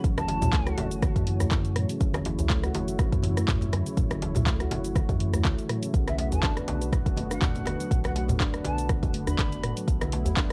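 A deep, up-front electronic kick drives this earthy afro house excerpt at 122 BPM in F# minor, with a ringing stainless-steel handpan arpeggiating through tape echo, a round sine sub bass, a chorused sawtooth pad in the background, dark-hatted afro-pop kit, cracking djembe, very quiet thin-skinned congas, and a breathy, distant jazz flute melody that returns from 6.1 seconds, all moving from F#m7 to Bm7 with cassette-tape grit and sidechain pumping on the pad, handpan and bass.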